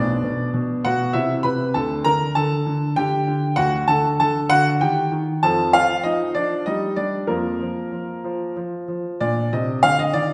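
A clear baby grand piano opens this brief, playful fragment of a classical-period sonatina, sitting up front with an open tone and long sustain. It moves in a lilting three-beat metre with an elastic, rubato feel, ranging from B1 up to B5 and keeping a cheerful mood throughout. The harmony starts on B minor and Cmaj7 before brightening through D, E-flat, F and G. Near 8.6 seconds the chords briefly fall away, and a new passage begins on B-flat at 9.2 seconds before the piece is cut off at 10.3 seconds. A wet recital-hall reverb with a 1.6-second decay surrounds the piano, giving it the resonant bloom of a church or concert hall.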